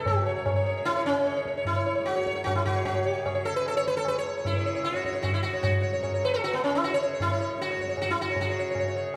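A wet, hall-like reverb surrounds this short Hindustani classical excerpt, which carries a longing, meditative mood in a seven-beat cycle that gradually speeds up. Up front, a warm, plectrum-plucked sitar carries the melody with buzzing tone and shimmering sympathetic strings. A bright, softly plucked tanpura holds the drone in the background, and a low-tuned, ringing tabla with a small-room sound enters at 0.1 seconds.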